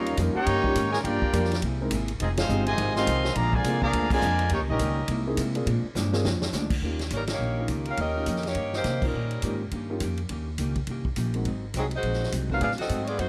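Driving swung eighths at 208 BPM propel this energetic, brassy big band swing excerpt, where a brilliant, tight trumpet section carries the melody over a clear trombone second line until 5.2 seconds, a woody pizzicato upright bass, a dark hollow-body jazz guitar in the background, a grand piano with audible action noise, and a vintage drum kit with a tight kick and rolled-off top, punctuated by band accents and a drum fill before the music settles into Eb mixolydian, where a warm saxophone section with vibrato takes up the melody from 7.1 seconds amid light reverb.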